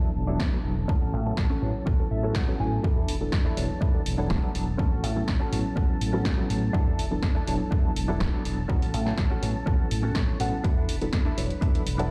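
This sunny, feel-good filtered disco house excerpt opens with a reedy, slightly out-of-tune electric piano comping through fast tremolo and phaser, alongside a lush string machine holding sustained chords in the background and a clean, scooped electric guitar riff coated in analog chorus, all pumping against the beat under a low-pass filter sweep that runs the full 12.1 seconds. A fingered electric bass joins at 0.2 seconds with a warm, direct and amped tone, and at 0.4 seconds the drums arrive: a punchy analog kick and a drum machine supplying snare and hi-hats, with the hats pumping too. The groove sits at 123 BPM in a straight 4/4, swaying between E7sus4 and A6 chords. The picked, compressed guitar breaks into short fills around 1.9 and 9.9 seconds. The mix is fairly dry up close yet carries the boom of a big sound system in a bare room, giving the loop a vintage, dance-floor glow.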